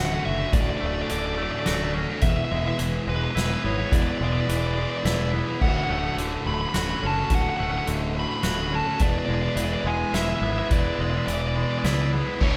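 This hopeful, euphoric post-rock passage in 3/4, cut from a longer piece, opens with a smooth, shadowy overdriven lead guitar melody over twangy clean arpeggios with a warbly pitch drift, an up-front sludgy guitar riff and a growling, punchy fingered bass, while the harmony moves between Dmaj7 and E7. At 0.5 s a soft-mallet drum kit joins with a boomy kick, fat snare and dusky cymbals. A tight, bright distorted guitar riff appears only at 12.4 s, and the whole passage sits in a wet hall reverb.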